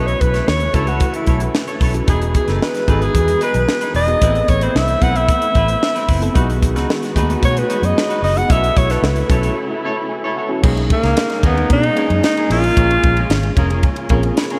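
A clear, up-front alto saxophone solos with light vibrato over a glossy, upbeat 1980s jazz-funk pop groove at 112 BPM, backed by a worn, slightly out-of-tune tine electric piano with light overdrive and chorus that adds fills at 9.8 and 13.3 seconds, a bright semi-hollow electric guitar riff bathed in lush chorus, a round foam-muted fingered bass, distant bowed strings holding dark sustained chords, and a crisp fusion drum kit with a punchy kick and high-tuned snare, all set in a dreamy hall reverb as chords move from B9sus4 through Emaj7 to a brief break before shifting to Bmaj13 at 10.6 seconds in this cut from a longer piece.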